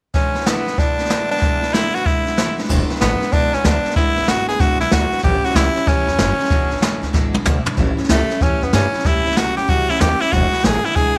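A raspy, forceful tenor saxophone leads from the start, carrying the melody up front over picked steel-string acoustic guitar and a jazz brush drum kit with dark cymbals and a boomy kick, in this retro, rollicking rockabilly excerpt at 189 BPM with a swung feel in E major. At 2.7 seconds a woody, thumpy upright bass joins as the second section begins, the chords moving between E7 and A7. A drum fill at 7.1 seconds stands out before the saxophone's gritty, punchy line carries on, all set in light reverb and small room ambience.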